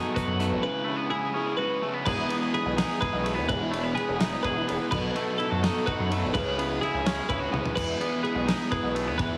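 Three guitars open together in this wistful, playful math rock and midwest emo excerpt in 6/8 at 84 BPM in E major: a clean, twangy electric guitar on accompaniment, a twelve-string electric spinning compressed arpeggios with subtle chorus, and a raw, overdriven, double-tracked garage guitar riff. A loose, small-room indie drum kit with dark cymbals and a tight kick joins at 0.2 s and plays a fill at 7.5 s, while a gritty, nasal sawtooth synth bass with oscillator sync and filter sweeps rounds out the low end, and the mix sits in a heavily compressed radio sound with light reverb as the chords cycle through B7, C#m7 and Emaj7.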